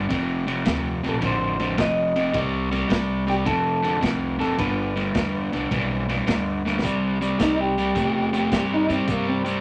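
A swung shuffle drives this swaggering, gritty electric blues fragment, where an up-front overdriven guitar riff and a woody pizzicato upright bass play alongside a saturated, dark-cymbaled breakbeat kit in a small wet room, while a slightly broken-up, compressed electric guitar through a small old amp carries the melody and a drum fill at 6.6 seconds sets up a clean guitar solo from 6.8 seconds.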